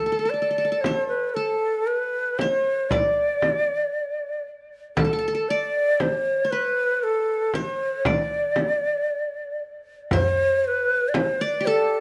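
A breathy reed ney opens this festive Arabic maqam piece, carrying the melody up front with a soft attack and vibrato, while a plectrum-plucked qanun sounds a quieter second line beneath it, its triple strings bright-edged. At 0.8 seconds a deep, vintage frame drum joins close in the mix, its soft-handed strokes sounding band-limited and large. The music moves in a straight 10/8 metre, and the ney's bright tone stays clearly ahead of the other parts. From 10.1 seconds, as a new section begins, a metal-shelled darbuka adds crisp, hard-handed strokes with a small-room character, sounding until 11.4 seconds alongside the frame drum. A moderate studio reverb gives the ensemble a sense of space in this short cut from a longer piece.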